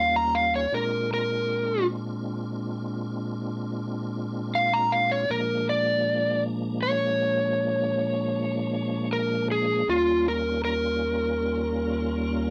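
A dark studio sound with moderate room ambience frames this soulful, swaggering blues, cut from a longer piece: a slow 12/8 groove at 52 BPM in Bb mixolydian, where an overdriven electric slide guitar sings the fingered melody up front for the full 12.5 seconds over a full, clean tonewheel organ holding sustained chords through a slow rotary speaker and chorus vibrato, the harmony moving from Eb7 to Bb7 and returning to Eb7 at 9.9 seconds.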